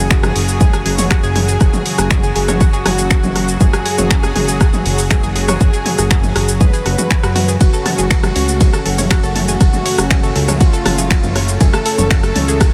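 Melodic techno at 120 BPM in F# harmonic minor, dramatic and hypnotic, where an overdriven, up-front electronic kick and a tape-warm analog drum machine of snaps, hi-hat, ride, rim click, shaker and toms drive a fat, detuned sawtooth bass, while a brassy, warbling synth brass melody with chorus and analog delay is joined by a second line from a lush bowed violin section with tape echo, over a smooth detuned pad, a round filter-plucked arpeggio, a very quiet evolving drone entering at 0.1 seconds, sidechain pumping on most parts and light reverb, as chords move from C#sus4/F# to F#madd9 at 7.6 seconds.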